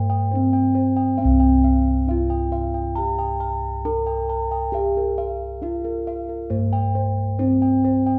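A bronze gamelan-type metallophone carries the melody in this serene, ceremonial gamelan piece in C slendro, moving at a slow 68 BPM in 4/4; its ringing, mellow tone comes from padded disc mallets and sits forward in the mids. Beneath it, close-miked bossed gongs hold the bass with a round, full, dry presence up front, while a softer set of bossed gongs adds beating, metallic arpeggios in a higher register from 0.1 seconds. A wet recital hall reverb surrounds the ensemble, and a brief opening section gives way to a longer one at 1.2 seconds.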